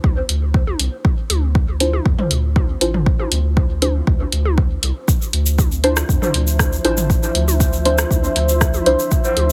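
A straight 4/4 dub techno groove opens on a tape-warm, up-front electronic kick, with overdriven electronic toms pumping against the sidechain and a deep house kit of hi-hat and rim click, both trailing dub echo. A round, sine-like analog bass pumps beneath soft, nasal chord stabs on a single minor ninth chord, their filter sweep coloured by chorus, phaser and echo, while a grainy egg shaker joins at 5.1 s and a moody, detuned analog pad swells in slowly at 6.4 s. The cut has a deep, cavernous mood, heard through light reverb and a heavily compressed, radio-like sound.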